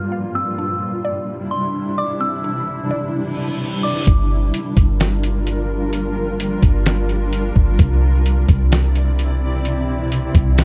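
Blissful and floating, this atmospheric cloud-rap excerpt moves at 129 BPM in a half-time 4/4 feel. It opens on a blurred, detuned granular cloud pad with built-in reverb and sidechain pumping, while a woody mallet-like synth pluck plays arpeggios in the background through chorus, phaser and digital delay. A pure, gentle synth bell melody enters at 0.3 seconds over Cadd9 as a filter sweep unfolds, and a downlifter and reverse cymbal mark the edges. At 4.1 seconds the chords shift to Gm7 as a round, deep 808-style bass and a compressed, pitched-down sampler-style drum kit with a thumpy kick and medium-tuned snare take the front beside the pad, returning to Cadd9 at 7.8 seconds. The whole recording sounds dry, worn and dull-topped, like old cassette tape with warbly pitch drift.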